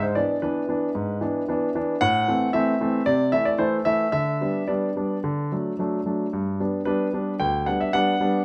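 A clear, intimate concert grand piano plays alone for the full 8.4 seconds of this elegant, playful passage cut from a longer classical-period sonatina, moving with rubato in 4/4 through an E7/G#, Am and G/D progression that settles on G, its deep bass, long sustain and audible action noise sitting up front in a polished, present sound with a moderate large-studio reverb and tuning at A4 = 437 Hz.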